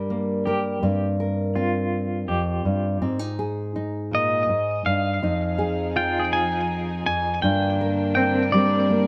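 In a straight 6/8, this melancholic, heartbroken acoustic folk-pop ballad opens on an up-front nylon-string guitar, fingerpicked on fresh strings with a deep classical tone and audible finger squeak. A clean electric guitar with tremolo joins at 0.5 seconds, picking twangy arpeggios, and at 4.1 seconds a bright, compressed pedal steel guitar comes up front with slide and volume swells in a high second line trailed by tape echo. At 5.2 seconds an intimate chamber string section adds soft-attack, sul tasto chords with light vibrato as the harmony moves from Gm through Fm7 and back, all captured by close, detailed microphones in a dry sound.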